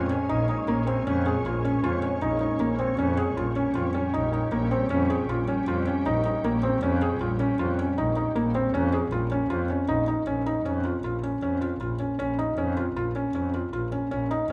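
Urgent yet pensive, this contemporary chamber piece in an uneven 5/4 meter moves at 156 BPM with a straight feel in Bb dorian, cut from a longer work. A felt-muted upright piano sits up front with soft, mellow arpeggios, its intimate tone carrying audible action noise throughout the 14.5 seconds. Beneath it, a clear, focused double bass is bowed by a single player with vibrato, placed up front yet with a distant quality. A shimmering ambient pad holds sustained chords with a slow attack, long release, detuned sine tones, octave-up shimmer, granular texture, chorus and built-in reverb, giving an ethereal glow until it drops out at 10.2 seconds. The harmony rests on Bbm7 before shifting to Bbm at 10.3 seconds, where piano and bass carry on together in a recital hall with a wet, lingering reverb.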